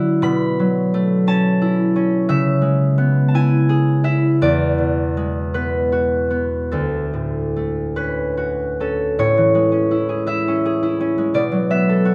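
Loosely pulsed in a rubato 6/8 at roughly 47-60 beats per minute, this gentle, wistful classical excerpt for solo concert harp unfolds in A major. The harp is warm, ringing and fingerpicked, spanning D2 to B5 and moving through Bm11, C#m7, E9 and Dmaj7 before a new passage begins at 9.2 seconds on Amaj7 and settles toward Bm7. A moderate stone-room reverb places the instrument further back in the space, and the clip breaks off mid-piece at 12.1 seconds.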